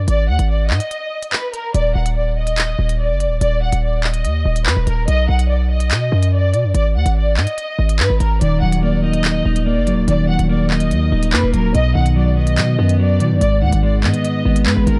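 A half-time drill groove of crisp hi-hats and handclaps, roughened with vintage 12-bit sampler grit, drives this ominous, dark hip hop excerpt, while a punchy, heavy 808-style bass with a fast attack and decaying tail sits up front beneath it, with a brief break between 0.9 and 1.7 seconds. A lush, bowed violin section carries the melody with smooth vibrato, softened by a low-pass filter and trailed by digital delay. At 8.4 seconds a clean, picked electric guitar joins as accompaniment, its shadowy tone bathed in spring reverb, all within a dry, dusky production.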